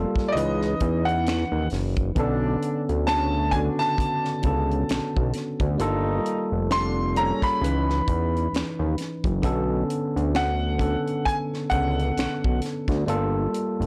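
A blown-out, overdriven recording with light reverb carries this sultry, soulful R&B and neo-soul passage at 66 BPM with a swung 16th feel, where a bright concert grand piano carries the melody over a clean tine electric piano, a fat, transformer-saturated analog bass and a tight funk drum kit with finger snaps and a high-tuned snare, while a mellow horn section adds jazz-style stabs with light vibrato from 2.2 to 8.0 seconds over chords moving through C#m9, Bm9 and Gm9.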